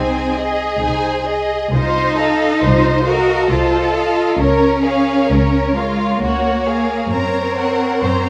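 Yearning and melancholic, this short cut from a longer slow romantic orchestral movement unfolds in Bb minor at 66 BPM in a rubato 3/4, moving from Ab/C through F7/C and Bbm/Db to Gb. A dark, soft-attacked violin section carries the expressive melody from the background, while a second violin section adds a focused, distant line, violas supply lush accompaniment, and an up-front cello section plays a smooth, even bass. Beneath them the double basses sound shadowy and gently sliding with portamento, all bowed with vibrato in a moderate scoring stage reverb.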